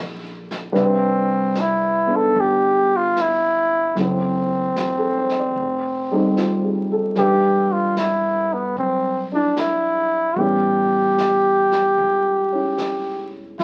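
Heard through the crackle of a very old 78 rpm record and a wet studio reverb, this tender, romantic jazz ballad in C major moves at a swung 75 BPM, with an intimate baby grand piano (its action noise audible and its notes short) accompanying over a woody, dark pizzicato upright bass in the background, a vintage brush kit of brushed snare and hi-hat joining at 0.5 s, and a close-miked, warm flugelhorn entering up front at 0.8 s to carry the solo melody with scooped notes over chords moving from Cmaj9 through F#m7b5 and F9 to Em7 and A7.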